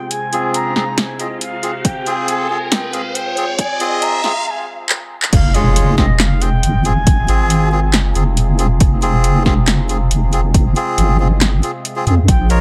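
Lightly reverberant and high-pass filtered, this heavy, brooding deep dubstep excerpt in half-time opens with an airy bamboo shakuhachi carrying the melody through low-pass filtering and dub echo. Beneath it sit a slow-attack drone of resonant, moving overtones and nasal melodica stabs, which are also low-pass filtered and echoed. A riser climbs over a filter sweep as an overdriven deep house kit with punchy snare and metallic hats and a deep, overdriven electronic kick come in. A short break and drum fill lead to the drop at 5.3 s, where an impact hits and a dark, detuned wobble bass enters up front; the shakuhachi falls silent at 8.2 s before returning briefly near the end.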